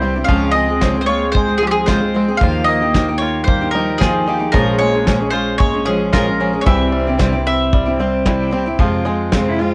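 A fragment of a haunting, wistful acoustic folk piece opens with the strings together: a bright picked steel-string guitar, up front with audible finger squeak, carries the accompaniment while a woody, double-strung mandolin plays the melody. Beneath them, a bowed cello played sul tasto adds a soft, intimate second line in the background, a twangy fingerpicked bluegrass banjo plays arpeggios, and a dark, growly pizzicato upright bass holds the low end. At 0.3 seconds a soft brush drum kit joins with a tight kick and a medium-tuned snare, airy and polished in a small room. The tempo is a steady 113 BPM in straight 4/4, with the harmony moving through Dbmaj7, Ebadd9, Bbm7 and C before arriving on Fm. The mandolin stops at 8.2 seconds, and the recording carries light reverb and the worn character of a home cassette.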